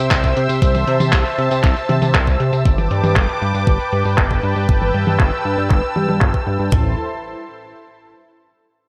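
A lush, detuned sawtooth pad and a glossy, chorused synth bass open this nostalgic, melodramatic italo disco excerpt at 118 BPM in A minor, moving through C, Gadd9 and Am as a clean 12-bit drum machine with a thumpy kick and toms joins at 0.1 seconds alongside a gritty, overdriven soul sampler kit of handclaps, hi-hat, tambourine and toms under gated reverb and a filter sweep, the drums dropping out by 6.8 seconds.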